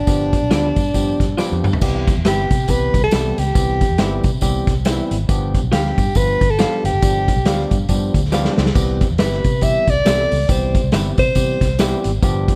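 A clear, up-front alto saxophone with vibrato and a soft subtone attack opens this swung, driving and passionate 1960s-style soul excerpt over round, foam-muted electric bass, joined at once by a barky tine electric piano with tube saturation, a punchy vintage drum kit with dark cymbals that fills at 1.4 s and 8.3 s, and a jingly, distant tambourine, while from 0.5 s slightly broken-up electric guitar stabs with tremolo sit in the background of a dark, small-room production.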